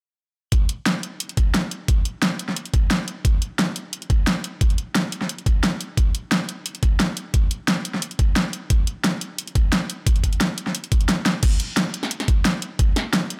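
A straight 4/4 drum and bass groove at 176 BPM, soulful and lush, pairs a gritty, thumpy, compressed electronic kick with an overdriven, layered pop drum kit of fat snare, warm hats, hi-hat and crash, both up front in light reverb, with the kick dropping out from 11.1 to 11.4 seconds around a drum fill at 11.3 seconds in this excerpt.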